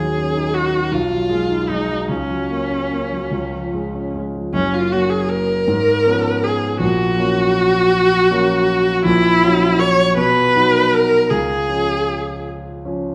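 A bowed viola sings a tender, serene melody from the first moment over a concert grand piano in this romantic classical duo in a rubato 6/8, the viola rich-toned and expressive with vibrato and portamento, the piano open and long-sustaining with a deep bass, both up front in a wet stone room, until the viola stops at 12.5 seconds and the piano carries on to 13.1 seconds in this fragment cut from a longer piece.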